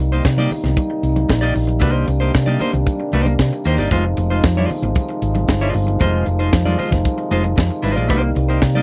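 A straight 4/4 disco groove at 114 BPM in C minor drives this glamorous excerpt from a longer piece, where a tight funk kit with a high-tuned snare and round, amped hollow-body bass sit up front beside a dark, clean picked electric guitar, a mellow, distant French horn section holds sustained chords with light vibrato over Cm7 moving to Fm7 and back at 8.1 seconds, very quiet damped congas and a jingly, band-limited tambourine in the background add color, and the whole is captured as a dry, close 1970s-style studio recording.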